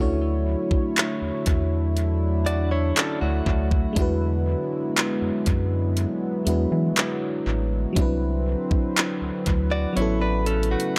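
This smooth, dreamy contemporary R&B excerpt opens on a glassy, bell-like FM electric piano, a mellow analog pad of slow-blooming sustained chords and a clean, direct-recorded electric guitar picking arpeggios, all sitting over a rubbery, hollow square-wave bass that is dark and up front. The drums join at 0.7 seconds with a knocking kick, warm hi-hat and handclaps, their electronic, tape-warm sound also up front and touched by tape echo. At a slow 60 BPM in straight 4/4, the harmony moves from Dmaj9 to E9, then Cmaj9#11, before settling on A69 at 10.0 seconds. Chorus gives the piano and pad a gentle shimmer, while tape echo trails the compressed guitar lines. The bass drops out at 10.8 seconds, and light reverb with digital ambience leaves the whole mix dreamy and echo-heavy.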